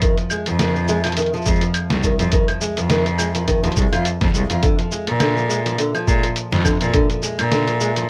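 Folktronica at 104 BPM in 4/4 with a light 16th-note swing, this autumnal, delicate fragment sits in F dorian and moves from Fm7 to Bb7 at 4.6 seconds. A fingerpicked, ladder-braced acoustic guitar plays arpeggios with a dark, boxy tone, colored by tape echo and plate reverb. Underneath, a sampler-style electronic kick gives a muffled, thumpy pulse until 7.1 seconds. A pitched-down, lo-fi drum kit adds claves, hi-hat, shaker and a fat snare, its sound compressed and tape-warm, as if re-recorded in a small room. From 0.5 seconds a single bowed cello carries the bass line up front, clear and earthy with light vibrato and an airy bow, all within a light reverb.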